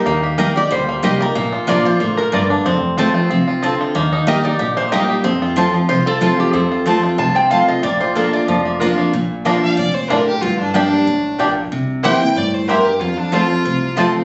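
Swung eighths in 4/4 drive this lively, virtuosic bluegrass fragment, where a nasal, metallic lap resonator guitar, played with slide and fingerpicks and bathed in plate reverb, carries the melody until 8.6 s over a bright, full-bodied picked dreadnought guitar, twangy, percussive banjo arpeggios, woody double-string mandolin stabs and a thumpy pizzicato upright bass on gut strings, before a clear, focused bowed fiddle with light vibrato and slapback echo takes a soloing second line from 9.6 s, the whole cut captured on a phone in a moderately reverberant room with its top end dulled.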